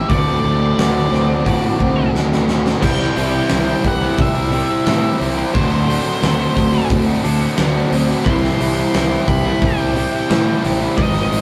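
Shoegaze and dream-pop rock, dreamy and blissful, cut from a longer piece, where a dark, fuzzy lead guitar sings a high melody over bright, compressed clean arpeggios and two warm overdriven guitar riffs set back in the mix. A punchy fuzz bass and an up-front drum kit with a boomy kick and a fat snare drive the groove, and a drum fill at 2.1 seconds leads into a new section where a very quiet, double-tracked garage guitar joins at 2.8 seconds. The chords move between D7 and C, and the whole performance sits in a rough rehearsal-room sound with moderate stone-room reverb.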